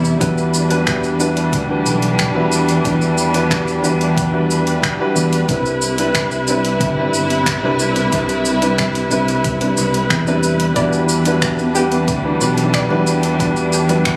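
Warm and smooth, this sunset chillout passage in E minor moves at a relaxed 91 BPM in a straight 4/4, tuned slightly below standard pitch and cut from a longer piece. A dark, lush symphonic string section sits up front with woody, bowed chords and vibrato, while a fingered electric bass adds a bright, growly low end and a grand piano with audible action noise and a boxy, intimate tone plays accompaniment through tape echo. The rhythm comes from an overdriven R&B-style kit of finger snaps, warm hi-hat and shaker, with a soft electronic kick, also overdriven, tucked in the background. The harmony drifts from Em7 to Cmaj7 and back, and at 10.8 seconds a soft, round pluck joins with gentle, decaying arpeggios treated with chorus and tape echo, followed at 11.6 seconds by very quiet, distant congas. The whole track carries light reverb, digital ambience and compression, with the roomy character of a phone recording made in the room and a club reverb.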